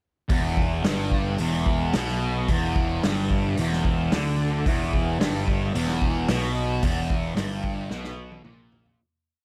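A dry recording opens this short, hazy and trippy psychedelic rock piece at 111 BPM in a straight 4/4, tuned slightly low to A4 = 438 Hz and resting on an E5 chord. A bright, double-tracked fuzz guitar with distortion and phaser drives a single-note riff up front, doubled by a growly, overdriven picked bass playing a dotted figure, while a punchy, roomy vintage drum kit with a rolled-off top supplies a big rock groove. All three play from 0.3 seconds to the end at 9.0 seconds, a fade-out begins at 6.8 seconds, and the drums close with a fill from 7.9 seconds.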